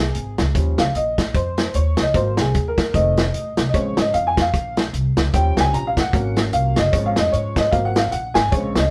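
Uptempo gospel at 150 BPM in 4/4 with a swung eighth-note feel, jubilant yet reverent, this short cut from a longer piece features a clear, worn upright piano soloing throughout, its boxy, slightly detuned tone and long sustain sitting up front. Beneath it, a woody, thumpy pizzicato upright bass on gut strings and a soul drum kit with a tight kick, medium-tuned snare, hi-hat and a rolled-off top carry the groove, captured as a band playing live in one room with moderate studio reverb. The harmony moves from Ab through Eb7, F7 and Bbm7 to an Ab9sus4 and Db/Ab before settling on Ab7.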